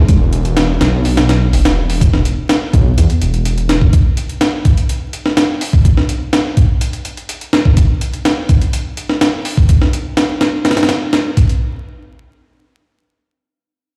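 Through light digital ambience, large studio reverb and vinyl crackle, as if played on a big sound system in a bare room, this swaggering, funky breakbeat excerpt at 125 BPM pairs a deep, rumbling detuned saw bass, saturated and dark, that sounds only until 3.9 seconds, with a gritty, pitched-up sampler-style drum kit of thumpy kick, high-tuned snare and hi-hat that stays compressed and up front through 11.6 seconds.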